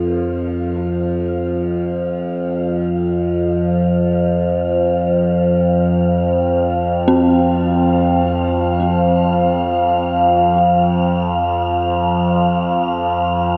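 Vast and ominous, this dark ambient drone drifts in free time through a short section cut from a longer piece. Up front sits a nasal, resonant drone built from sawtooth and sine tones between F2 and F3, its moving overtones sweeping over a slow attack and long release, thickened with chorus and its own reverb. Above it, an eerie, detuned FM synth bell plays mellow, inharmonic arpeggios between C4 and Bb4, each fast-struck note decaying into chorus, a diffuse ambient delay and shimmer reverb. High on F5, a breathy, wind-like tuned noise texture fades in across the full 13.6 seconds, sitting faint and airy behind the other parts. The whole piece is bathed in a huge, wet reverb with a 7.6-second tail, placing the sounds in a vast, echoing space.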